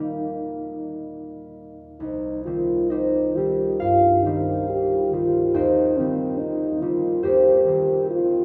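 Tender and warm, this short romantic classical fragment in C minor moves at a slow, rubato 56-72 BPM in 4/4, with a dark French horn singing the melody up front with light vibrato and a smooth top while a mellow concert harp, fingerpicked and ringing, accompanies from C2 up to G5 through Eb and C minor harmony, both sitting in a wet cathedral reverb with a long 6.5-second decay.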